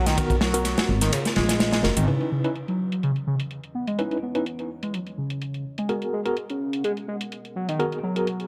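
A screaming, guitar-like overdriven synth lead drives this funky, raw breakbeat passage, set over a crunchy, gritty breakbeat kit and a woody, thumpy upright bass that both drop out at 2.1 seconds, when filter sweeps open on the lead and the deep, moody analog pad in the background, while metallic electronic hi-hats and worn, slightly out-of-tune tine electric piano stabs with tremolo and tape echo carry on in a small room ambience.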